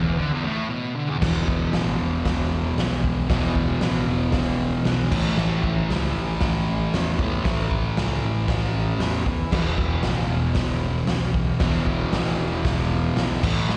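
Garage rock at 116 BPM, rowdy and raw, cut from a longer piece and heard as a live gig through the venue's PA in a reverberant hall, where a dark, double-tracked fuzz guitar with slapback echo plays an up-front riff over E5, A5 and E5 chords alongside a punchy, overdriven picked electric bass, both starting at 0.0 seconds before a gritty, saturated drum kit with a fat snare and rolled-off top crashes in at 1.2 seconds after a brief break.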